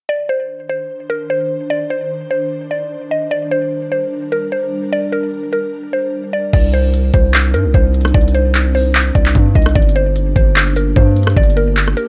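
This trap-flavoured hip hop clip in C minor moves at 149 BPM in 4/4 with a half-time feel, and its mood is eerie and brooding. A woody, round, mallet-like synth pluck carries the melody from 0.1 seconds, sitting up front with chorus, a low-pass filter and delay. At 0.7 seconds an ethereal, airy pad enters beneath it, holding detuned sustained chords bathed in ensemble chorus and its own reverb. The harmony alternates between Cmadd9 and Gm throughout. At 6.5 seconds the beat drops in: a distorted, heavy 808-style bass pushes up front, while a tape-warm electronic trap kit brings a knocking kick, crisp hi-hats, handclaps, rim clicks and a crash cymbal. The overall mix is dry and dark-toned, letting the aggressive low end and the mellow pluck dominate.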